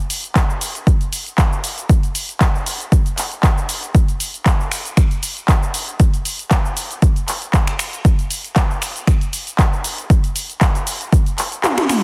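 A dense, heavily limited modern master carries a layer of vinyl crackle and a light reverb, giving this short drums-only house cut from a longer piece a hypnotic, warm character. The deep house drum kit runs throughout, mixing finger snaps, handclaps, dark hats, shaker and toms in a layered, produced blend that sits up front and was re-recorded in a small room. An electronic kick drum enters at 0.4 seconds, punchy and layered, sitting up front and louder than the kit. The groove rides a gentle swing on the sixteenths in steady four. The kick stops at 11.2 seconds, and a drum fill with a band accent closes the passage at 11.6 seconds.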